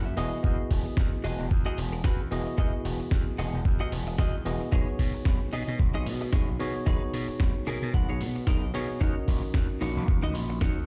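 A bell-like tine electric piano with delay, a clean electric guitar riff softened by lush chorus, filtering and delay with a short fill, and a punchy overdriven slap bass all open this sunny, groovy nu-disco excerpt at 112 BPM with a light 16th-note swing. A dusty soul sampler-style kit of hi-hat and medium-tuned snare arrives at 0.2 seconds, followed by a thumpy, up-front electronic kick at 0.4 seconds, both carrying a gritty, tape-warm character. Over chords of Emaj9, B69 and D#m7, the guitar adds another fill near 7.4 seconds, and the whole mix sits in a big, reverberant room sound.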